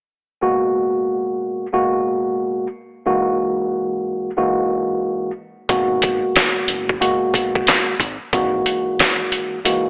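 A swung sixteenth-note groove in 4/4 drives this short, moody boom-bap hip-hop passage, cut from a longer piece. A mellow tine electric piano carries the accompaniment from the start, its clean, up-front tone shaded by cassette tape and filtering as it moves between G#m9 and F#9/G# chords. At 5.7 seconds a trip hop sampler-style drum kit arrives with a thumpy kick, medium-tuned snare, hi-hat and handclaps, sounding compressed, pitched down and gritty. A deep dub fingered electric bass enters alongside it, dark and round in the background, before dropping out at 8.6 seconds. The recording sits in a moderate echo chamber reverb with a boxy, telephone-like quality that deepens its gritty atmosphere.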